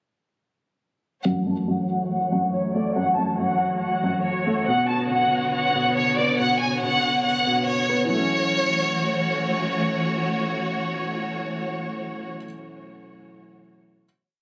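The recording sounds like a phone capturing a playback in a small room, with compressed, club-style reverb around it. This is a tense, dark drill hip hop piece at 140 BPM in a half-time feel, in F# minor and tuned slightly flat of standard pitch. All three parts enter together at 1.3 seconds under a filter sweep that runs through the breakdown, moving from F#m7 to Bmadd9. An up-front violin section carries a looping, sampled-sounding melody with vibrato and portamento, its bowed tone muffled by a low-pass filter and trailed by delay. Beneath it, a felt-muted upright piano repeats a soft, vintage eighth-note arpeggio, while a lush symphonic string section holds dark, smooth-topped sustained chords. The music settles onto a final F#m7 at 8.1 seconds, and after the strings stop at 12.3 seconds the mellow piano plays alone to the close.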